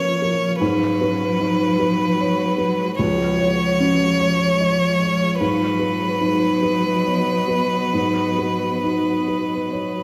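Neoclassical piano and strings in a melancholic, reflective mood, moving with a rubato feel in 3/4 at 66-77 BPM in G# dorian, taken from a longer piece. A clear, up-front single violin carries the melody with smooth vibrato over a rich, expressive cello line with portamento and tape echo, while a felt-muted upright piano supplies mellow, intimate accompaniment, its boxy tone carrying audible action noise. In the background, a cloudy, detuned granular pad holds blurred sustained chords with its own reverb, and the ensemble sits in a wet scoring-stage space.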